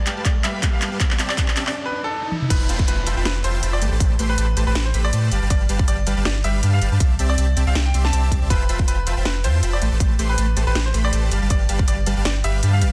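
A punchy, overdriven electronic kick drum sits up front in this bittersweet, dreamy future bass excerpt, its layered hit carrying the grit of a small room. Around it, a huge, detuned supersaw riff with a sub-octave layer pumps against the sidechain in a half-time, lightly swung feel. A bright, polished grand piano plays the melody with short sustain and delay, while a trap kit adds a sharp snare, crisp hats, handclaps, toms and crash cymbals with a tape-tinged edge. The opening build-up features a drum fill, a background riser and downlifter, and a brief break at 1.8 seconds before the drop lands at 2.5 seconds, when a deep, saturated sub bass enters with its own pumping pulse. Lush extended chords cycle under a dense, heavily limited master with digital ambience.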